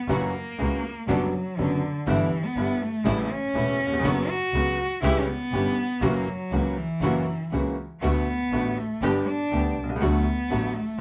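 Heard from a little further back in a moderately reverberant studio room, this passionate, dramatic tango excerpt moves at 121 BPM in 4/4 with a rubato feel. A warm, bowed cello sits up front and carries the solo through the full 11 seconds, its soft attack, vibrato and expressive portamento giving the line a singing, close presence. Beneath it, a woody, boxy upright piano supplies the accompaniment, while a clear, focused double bass, also bowed with vibrato, anchors the low end. A lush, smooth studio string section adds even, quieter stabs in the middle register. The harmony opens on F#7 and passes through chords such as Em7/G, F#sus4 and C#dim before settling toward D6, G and finally D.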